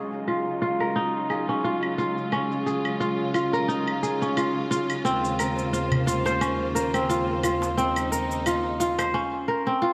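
A lightly swung sixteenth-note groove in 4/4 drives this warm, earthy organic downtempo fragment, where an up-front, ringing fingerpicked kora plays low-passed arpeggios with delay over smooth bowed studio strings holding rich vibrato chords that move from Ebm11 to Bbm9/Eb at 5.0 s, while electronic-sounding cabasa and claves, re-recorded in a large room and shaped by a filter sweep, sit quietly underneath until a crisp metal-shell darbuka, played with hard hands, joins in the background at 5.6 s, the whole mix set in a lush hall reverb.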